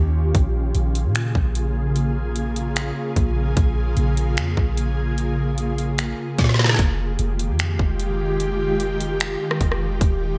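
A bright, 1980s-style digital production sits in a moderately lush hall reverb, giving this short cut from a longer atmospheric cloud-rap track a spacious, melancholic air. At 149 BPM in 4/4 with a half-time feel in F minor, an ethereal, airy pad holds sustained chords throughout, its detuned unison sawtooth and triangle tones layered with noise, softened by slow attack, long release, ensemble chorus, built-in reverb and sidechain pumping. Beneath it, a clean 808-style bass with a deep, boomy sine tone, fast attack and decaying notes runs the full length, supplying a dark low end. The trap drum kit enters at 0.3 seconds, up front and electronic, with a hard-clipped kick, woody snare, metallic hi-hats, rim clicks and finger snaps treated with gated reverb. A drum fill at 6.4 seconds leads the harmony from Bbm7 to Fm9 at 6.8 seconds, opening the second section.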